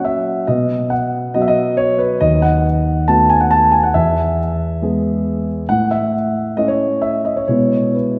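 A dark, mellow concert grand piano plays alone and up front from the start, its deep bass reaching down to D#2 as it carries this playful, graceful classical-period sonatina in E major at 138 BPM in 4/4 with a rubato feel. Over about 8.2 seconds the harmony moves from B through B7/D# and E to A before settling on E/B. A wet concert hall reverb with a 2.3-second decay surrounds the instrument in this short excerpt from a longer piece.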